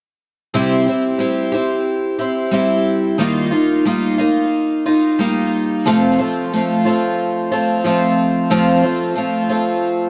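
A picked twelve-string acoustic guitar carries this short rock passage alone, its shimmering, octave-doubled strings sitting up front in the mix. The mood is nostalgic yet hopeful, moving in a straight 4/4 feel at 90 BPM. The guitar spans a range from F2 to G4, and a digital delay trails behind its notes while light reverb gives the sound a gentle sense of space. The harmony moves from C to Ebadd9 at 3.2 seconds and settles on F at 5.9 seconds. Cut from a longer piece, the passage runs from 0.5 to 10.1 seconds, tuned slightly below standard pitch at A4 = 438 Hz.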